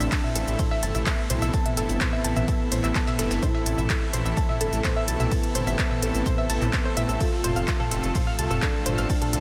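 Melodic techno at 127 BPM in A minor, this melancholic, dark passage is cut from a longer piece and rides a straight 4/4 pulse. A punchy electronic kick sits up front alongside a deep house kit of handclaps, smooth hi-hats, ride cymbal, shaker and toms, while a gritty, very quiet sampler-style kit adds a fat snare, hats and shaker underneath. A rumbling, detuned saw bass with tube saturation pushes the low end, and a lush, airy unison pad holds sustained chords over Am before moving to F at 7.2 seconds. A woody, wave-folded pluck spins arpeggios through analog chorus, cassette tape coloring and tape echo, as an expressive synth lead sings a smooth, evolving melody with vibrato and its own echo. Sidechain pumping makes the bass, pad, pluck and lead breathe against the kick, and a moderate cathedral reverb soaks the mix in a dreamy haze.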